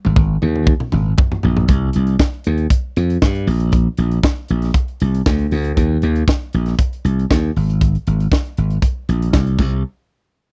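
A drum fill opens the excerpt, running from 0.0 to 1.7 seconds on a tight funk kit whose crash cymbal, hi-hat, snare and toms sound acoustic and mid-forward, with a high-tuned snare and a punchy kick. The electric slap bass joins almost at once, growly and bright, its amped tone sitting up front beside the drums and moving between Ab1 and G2. After the fill, the pair settle into a glamorous, driving disco groove in straight 4/4 that carries on until the clip ends at 9.8 seconds. The kit keeps a small-room character, while the recording overall is dry and close, in the manner of a 1970s studio session with little reverb. This brief passage, cut from a longer piece, puts the rhythm section squarely in the spotlight.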